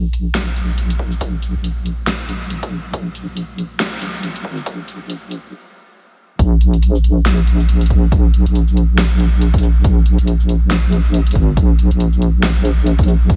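Deep dubstep with a heavy, cavernous mood and a swung, half-time feel, cut from a longer piece. A dark wobble bass of square and sine tones, treated with chorus and tube saturation, sits up front from the start. It is joined by a deep house kit of hi-hat, shaker and fat snare and, from 1.0 seconds, a punchy layered electronic kick, as a filter sweep builds toward a brief stop at 5.5 seconds, and then the drop lands at 6.4 seconds, with the compressed, sustained bass rolling on beneath light reverb.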